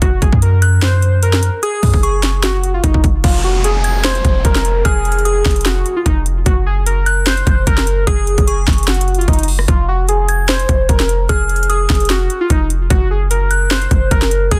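This dark, hard-hitting trap excerpt moves at 149 BPM in 4/4 with a half-time feel, centred in F phrygian as the harmony shifts between Gb and Fm7. Warbling, detuned lo-fi synth keys carry the nostalgic melody, their mellow triangle-and-sawtooth tone colored by chorus, phaser and delay. Up front, a clean, boomy 808-style bass anchors the low end beneath an electronic trap kit of hard-clipped kick, sharp snare, metallic hi-hats, rim click and crash cymbal. A delicate, tinkling FM tine bell enters at 0.6 seconds as a bright second line high above, shimmering with chorus, phaser, tremolo and delay. An electronic downlifter sweeps through between 3.2 and 6.5 seconds, and the whole mix sits in a digital ambience with a dense, heavily limited modern master.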